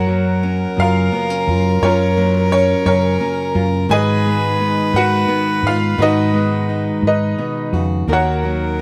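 Acoustic folk-pop ballad in F# major, hopeful and heartfelt, moving at a slow 58 BPM in a straight 6/8 and cut from a longer piece. A bright, slightly detuned upright piano carries the melody up front, its audible action noise lending an intimate, close feel. Alongside it, a rich violin floats a pure second line, bowed sul tasto with a soft attack by a single player. A small, fingerpicked nylon-string guitar with old strings sits in the background as accompaniment, joined at 0.1 s by a picked parlour steel-string acoustic guitar playing arpeggios. A round, punchy fretless electric bass with a dark, hollow-body tone anchors the low end up front, and light reverb surrounds the ensemble as the harmony moves from F#maj7 to G#m7 at 3.9 s and D#m7 at 8.1 s.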